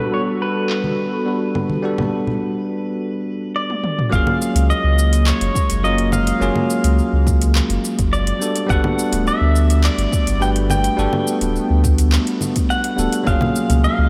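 A straight 4/4 groove at 105 BPM drives this blissful sunset chillout excerpt: an overdriven deep house kit with metallic hats plays through a filter sweep, distant congas sound in a large room, and a drum fill leads to 4.1 s, where a round sine sub bass sits up front and an overdriven electronic kick joins. Over chords moving between Gmaj9 and F#maj9, a clean, compressed pedal steel guitar carries the melody with fingerpicked slide and volume swells, and a bright, bell-like tine electric piano accompanies it, both with tape echo. A breathy, detuned pad with chorus holds soft sustained chords in the background, while plate reverb and a low-pass filter give the mix a dreamy haze.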